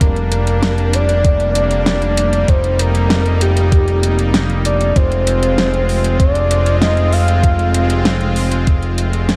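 A straight 4/4 pulse drives this cinematic, nocturnal synthwave passage, cut from a longer piece, with a thumpy, sampler-style electronic kick sitting up front alongside a layered pop kit whose fat snare and metallic hi-hats carry an overdriven edge from a small room. Underneath, a thick, nasal analog bass holds a low F, saturated and detuned, pumping with sidechain as it sustains. A soft, airy supersaw spreads smooth, detuned sustained chords moving from Gm/F to Eb/F to Fm, breathing with the same sidechain pump. Above, a round, octave-layered synth lead sings the melody between G4 and F5, thickened by chorus, tremolo, vibrato, tape echo and a touch of gritty 12-bit sampler character, until it stops at 8.1 seconds. The dark, warm production has light reverb, and the track fades out from 8.3 seconds to its close at 9.4 seconds.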